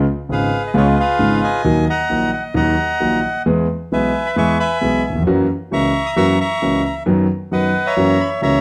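A reedy, bright, airy bandoneon carries the melody up front from 0.3 s in this melancholic, passionate tango fragment at 133 BPM in 4/4, played rubato and tuned to A4 = 445 Hz, while a warm concert grand piano accompanies from the start with deep bass, smooth, intimate, vintage tone and audible action noise over chords moving from C#7 through D#m, E and F#7 to B/F#, the pair sitting in a moderate large studio reverb with a dark production.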